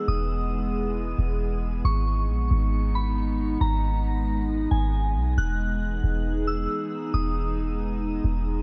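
A half-time 4/4 hip hop groove drives this melancholic, spacious fragment: a deep, boomy 808-style bass sits up front beneath a warbling, nostalgic tape-like pad with chorus, phaser and its own reverb, sustaining chords that move from Emaj7 to G#m and back, while a soft, pure FM synth bell with chorus and tape echo sings a high, gentle melody until 7.6 seconds, in a lightly reverberant room.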